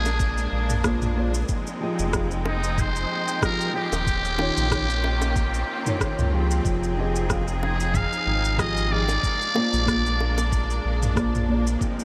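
Soaked in huge, dreamy reverb, this relaxed 12-second sunset chillout excerpt at 93 BPM sets an up-front, raspy muted trumpet with tape echo over biting, lush bowed strings, a round analog bass with ring-modulated depth, a dark thumb-plucked nylon-string guitar entering at 0.8 seconds with its own tape echo, a gritty thumpy electronic kick, a tape-warm deep house kit of rim click, shaker and toms, and very quiet high-tuned bongos, all swinging gently through Bb9, Fm7 and Eb13 chords.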